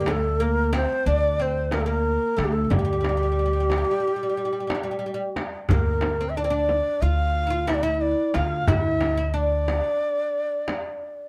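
The rhythm moves in a straight 9/8 at 181 eighth-note beats per minute, giving this fragment of a longer Turkish makam ensemble piece a hypnotic, longing pull in D makam ussak. An end-blown cane ney carries the melody between G4 and F5, its breathy, reedy tone sitting up front with vibrato and tongued notes, though it also carries a distant quality. Beneath it, a fretless oud plucked with a plectrum plays a second line from G3 to F4, its double strings giving a warm, woody, deep sound. A pizzicato upright bass on gut strings holds a thumpy D2 until 9.8 seconds. At 0.1 seconds, a crisp metal-shell darbuka, set back in a large room, enters together with a deep frame drum played with soft hands that stays in the background, and both drums stop at 10.8 seconds. Light reverb and a dark, warm production surround the ensemble.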